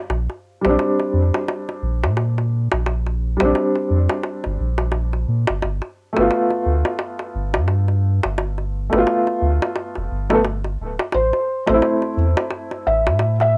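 A dark, woody upright piano carries tremolo, tape echo and a cassette grain over a deep, round dub sub bass with tube saturation and a close, dry clay-shell darbuka played with soft hands, laying down a hypnotic, cinematic trip hop groove at 87 BPM with a 16th-note swing through Bb6, G7 and Am, until a felt-muted upright piano, intimate with audible action noise, enters on melody at 11.1 seconds in this short cut from a longer piece, lightly reverberant and homemade on cassette.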